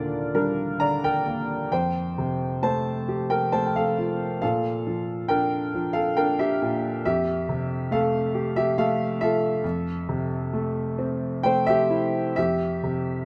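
A solo grand piano opens the recording, playing a peaceful, lyrical classical passage in F major at a calm 67 BPM in 3/4, shaped with a rubato feel. The instrument sounds intimate and up front, with a slightly boxy tone and audible action noise that the close, detailed microphones bring into view, all set in light reverb. Its range spans Eb2 to Bb5, and it is tuned a touch low, with A4 at 437 Hz. The harmony moves from Ebmaj7 to Fadd9, then to Bbmaj7 at 4.4 seconds and settles on Fmaj9 at 7.0 seconds. The piano plays throughout this short fragment of a longer piece, which ends at 13.2 seconds.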